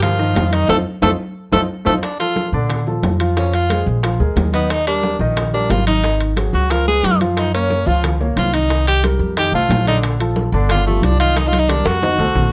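Lively and sophisticated, this Afro-Cuban jazz excerpt opens with the full band, including a growling, raspy trombone line in the background that drops out at 1.9 seconds, during a band accent and drum fill. From 2.0 seconds the bright, punchy tenor saxophone takes a forceful solo up front with vibrato, over polished grand piano chords and a woody, thumpy pizzicato upright bass. Ringing metal-shell timbales sit close and dry, while tight high-tuned bongos and vintage-toned congas played with hard hands fill out the background under light reverb.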